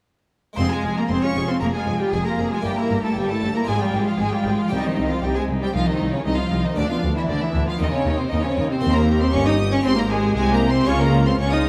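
A very quiet, brilliant harpsichord opens at 0.5 s, and from 0.6 s a stormy, dramatic baroque-style concerto passage unfolds: an intense violin section carries the melody alongside a distant, smooth solo cello, focused second violins move beneath, rich violas and an expressive cello section with portamento sit in the background, and clear, bowed double basses anchor the bass, inside a dark mix with a wet recital-hall reverb.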